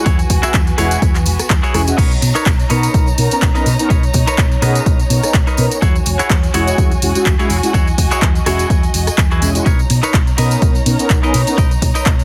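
Mellow, detuned synth brass and a rich, bowed studio violin section open this joyful, funky slice of filtered disco house, both breathing with sidechain pumping as the brass adds chorus and phaser shimmer. Moving at 125 BPM in 4/4 with a light 16th-note swing, the groove sits in B major and alternates between E69 and Bmaj9 chords. A bright, twangy clean electric guitar riff and a dark, round hollow-body fingered bass arrive at 0.1 seconds. An overdriven, punchy electronic kick joins the dry analog drum machine's handclaps, hi-hat, ride, rim click, crash and tambourine, with a very quiet, close acoustic tambourine beneath. The sound is dry and heavily compressed, with a loud, radio-ready punch.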